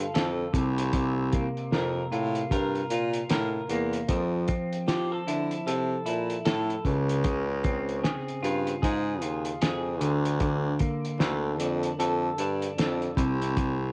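This cut from a longer piece has the hazy feel of a home cassette recording, with a small room ambience around the players. The mood is laid-back and sunny indie and bedroom pop, with a gentle swung sixteenth-note feel in 4/4. A clean, picked electric guitar plays the chords up front, colored by lush chorus, a warbly pitch drift and tape character. A warm baritone saxophone carries the bass line in a pop style, with vibrato and a smooth top. The cloth-damped, thuddy kit of hi-hat, kick and snare sounds muffled, saturated and gritty, with a fat snare, a tight kick and a rolled-off top. The harmony moves from Bbmaj7 and C7sus4 to Fmaj7 at 4.1 seconds, then through Dbmaj7 and Bbmaj7/D.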